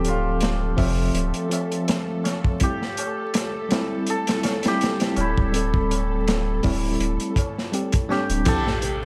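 Trip hop at 82 BPM with a lightly swung sixteenth feel, this brooding, melancholic excerpt sits in a small room coated with vinyl crackle. A bright, shimmering hammered dulcimer carries the melody through tape echo, while a bell-like tine electric piano with tremolo supplies the accompaniment over a Dm9 to C progression. Underneath, a round sine sub bass holds the low end up front, and a crunchy, saturated breakbeat kit with a tight kick and dark cymbals drives the groove, joined by a low-tuned, ringing tabla set distant in the background. A vintage string machine cello patch adds mellow sustained chords with ensemble chorus behind it all. At 8.5 seconds an electronic impact hits as the harmony returns to Dm9, and a woody, fingerpicked nylon-string guitar enters with dark arpeggios for the final moments.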